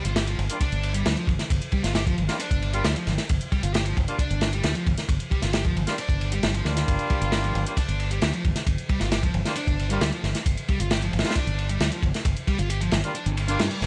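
A crunchy, saturated breakbeat kit with tight kick, medium-tuned snare and dark ride cymbal drives this energetic, raw 134 BPM breaks cut in G minor pentatonic on a Gm7 chord, alongside a background electronic hi-hat, a punchy up-front fingered electric bass, a thick double-tracked fuzz guitar riff with tape echo, distant horn stabs carrying vintage 12-bit sampler grit, and a reverse cymbal entering at 13.3 seconds, all set in a dry, gritty small room with vinyl crackle.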